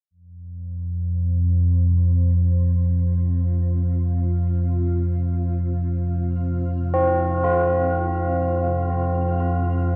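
Desolate and cavernous, this dark ambient drone in free time, tuned to A4 = 441 Hz, opens with a deep, ominous rumbling drone from 0.4 seconds under a filter sweep. At 1.3 seconds a faint, blurred granular cloud pad of sustained, detuned chords fades in, before solemn, metallic tubular bells ring out mellow arpeggios through delay from 6.9 seconds, all bathed in a vast cathedral reverb with cassette tape grain in what sounds like a section cut from a longer piece.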